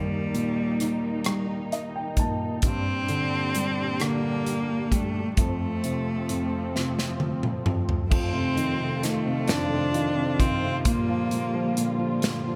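Tender and romantic, this short passage from a longer six-eight pop ballad unfolds at an unhurried, lilting pace. A clear, focused solo cello carries the melody up front, bowed with vibrato and touched by a delay, before falling silent at 11.9 seconds. Beneath it, a dark, mellow baby grand piano provides the accompaniment across its range and adds a brief fill between 1.3 and 2.6 seconds, while a woody, lush string section holds sustained bowed chords with a smooth top. An acoustic studio drum kit, up front with a punchy kick, medium-tuned snare, rim clicks, hi-hat, toms and crash cymbal, enters just after the start, its room sound pumping, and it plays a fill from 6.7 seconds that leads into the second section at 8.1 seconds. The harmony moves from Eb through Gm and F to F7 and a closing Bb6, all set in light reverb and a small room ambience.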